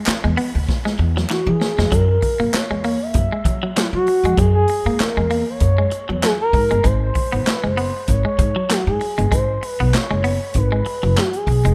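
A bright, twangy clean electric guitar riff with spring reverb opens this gritty, funky 97 BPM excerpt, joined at 0.1 seconds by a woody pizzicato upright bass, a roomy swinging big-band drum kit with a boomy kick and a drum fill, and a crisp, very quiet group handclap that stops at 1.5 seconds. Meanwhile, a smooth, detuned gliding portamento lead with chorus and vibrato enters at 1.3 seconds to carry the melody over 16th-note swing and chords moving from E to Gb9 and Abm7, all in a rough home-demo small-room sound.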